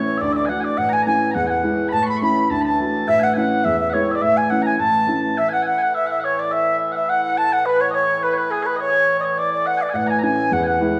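Celtic reel in a rollicking, bright mood, with a crisp, airy wooden flute carrying the melody up front over a sweet, mellow second line from small bagpipes, a dark, woody upright piano accompanying until 5.3 seconds and returning at 9.9 seconds, and a shimmering, vintage musette accordion holding a low drone, all set in a wet recital-hall reverb in this short section cut from a longer piece.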